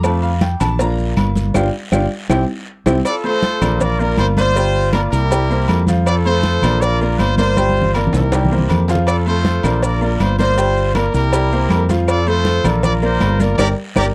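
A clear, woody upright piano leads the opening of this festive, danceable salsa at 160 BPM in F major, over a dark, round fingered electric bass up front and a background bed of bright congas, ringing agogo bells and timbales, woody claves, raspy guiro, grainy maracas and a very quiet low-tuned cowbell, with a band accent and drum fill leading into the next section. At 3.1 seconds a tight, bright trumpet section enters up front with light vibrato, carrying the melody over a repeating F, Bb, Gm7, C7 progression, punctuated by another drum fill and a closing band accent. The sound is dry and close, like a 1970s studio recording, cut from a longer piece.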